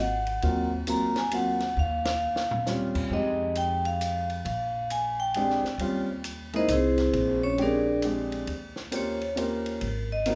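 Playful and relaxed, this short slice of small-group swing and bop moves at 134 BPM in a lilting 3/4, with a 65% swing on the eighth notes and an Eb mixolydian colour. Medium hard mallets on the vibraphone carry the melody between C4 and Bb5, its tone metallic and ringing with the motor off, close-miked and sitting up front. A dark grand piano comps beneath it from just after the start, mellow and intimate, with its action noise audible. The upright bass, pizzicato on gut strings, gives a woody, thumpy foundation low in its range, while a compact cocktail kit with dark cymbals, a high-tuned snare and a tight kick enters at 0.3 seconds and sits furthest back in the mix. A drum fill runs from 1.8 to 2.7 seconds, with the band landing an accent at 2.0, as the harmony cycles through rich thirteenth chords and a brief augmented chord before the opening strain starts again at 8.5 seconds. A moderate recital-hall reverb lends the whole performance a spacious, concert-hall air.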